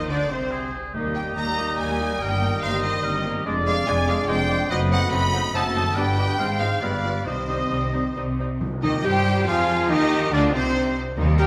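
A lush, stormy orchestral sound fills a moderately reverberant scoring stage in this fast, dramatic romantic movement in C minor, played at 142 BPM in 3/4 with a rubato feel and cut from a longer piece. Bowed violins carry an expressive, vibrato-rich melody over second lines from a pure flute, a dark clarinet, a roomy oboe and quieter violins, while a distant bassoon and very quiet violas fill the accompaniment, woody cellos and double basses hold the bass, and mellow horns and tight trombones sustain chords beneath background trumpet stabs. At 8.6 seconds the full band accents as round, soft-mallet timpani and a very quiet, close tam-tam strike, the harmony having already turned through diminished chords and a G7b9 back to C minor.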